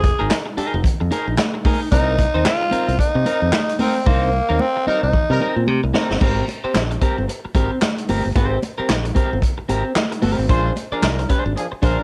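Cool and sly, this funk groove rolls along with a 16th-note swing feel. A growling tenor saxophone carries the melody up front, its breathy, raspy tone touched with light vibrato, until it drops out at 5.5 seconds. Beneath it, a fingered electric bass sounds bright and direct, while an electric guitar at the edge of break-up comps in a compressed, picked tone shimmering with harmonic tremolo and cassette grit. A vintage drum kit with a punchy kick, medium-tuned snare, hi-hat, crash and handclaps has a rolled-off top, and high-tuned congas patter softly in the background. A drum fill and band accent arrive at 4.1 seconds, a tight, smooth-topped horn section briefly joins as the sax line closes, and the horns return at 10.5 seconds over chords moving from Fm7 and Cm7 to Abmaj9 and Bb9. Light reverb and a home cassette recording give the whole cut a lo-fi, intimate character.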